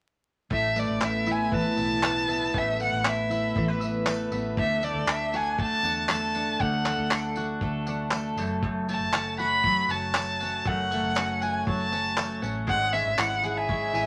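A straight 4/4 groove from a dry, cloth-damped drum kit with a tight kick, handclaps and tambourine carries this sunny, carefree acoustic pop excerpt. Underneath, a vintage fingered electric bass sounds round, foam-muted and punchy, while a jumbo steel-string acoustic guitar is fingerpicked up front with a full-bodied tone and audible finger squeaks. A bowl-back mandolin adds bright, picked arpeggios from its double strings, and a separate jingly tambourine sits close but in the background from 1.0 to 13.3 seconds. Over the top, a single bowed violin carries the melody with a rich, focused tone and vibrato. The harmony moves from Asus2 through D and F#m to C#m/G#, all in a moderate studio room with a layer of vinyl crackle.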